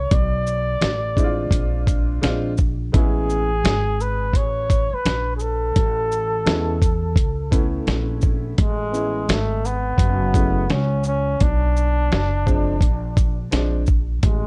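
Cool and warm in mood, this jazz-hop cut from a longer hip hop piece sits at 85 BPM in 4/4 with a swung sixteenth-note feel, in A major. A gritty, compressed sampler-style drum kit sits up front with a thumpy kick, medium-tuned snare, hi-hat and shaker. Beside it, a bright, woody pizzicato upright bass with steel strings holds down the low end. From 1.2 seconds, an upright piano adds smooth, vintage accompaniment with long sustain over chords like Bm7, Bb9, Amaj7 and F#m7. Above it all, a breathy, mellow flugelhorn carries the solo melody with light vibrato and a soft, whispered attack, sounding intimate yet roomy through plate reverb and analog delay. The whole recording has light reverb and the worn, warbling pitch drift of old cassette tape.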